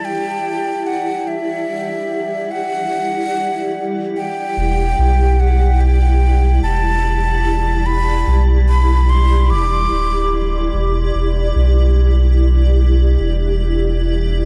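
A round, up-front sub bass anchors this hazy ambient dub excerpt, entering at 4.6 seconds, just as the harmony shifts from Em9 to Em7, with a deep, sine-like tone that sustains beneath it. Above it, a breathy, mellow silver concert flute carries the melody from the opening, played close-miked with a straight, tongued and slightly unsteady tone, its phrases trailing through dub echo until the flute stops at 10.7 seconds. A granular cloud pad holds sustained chords throughout, its detuned unison layers blurred and evolving, with a slow attack, long release and a bright, full-bodied shimmer bathed in its own reverb. The relaxed, gently swung groove and the echo-heavy small-room ambience give the piece a deep, drifting, dreamlike mood.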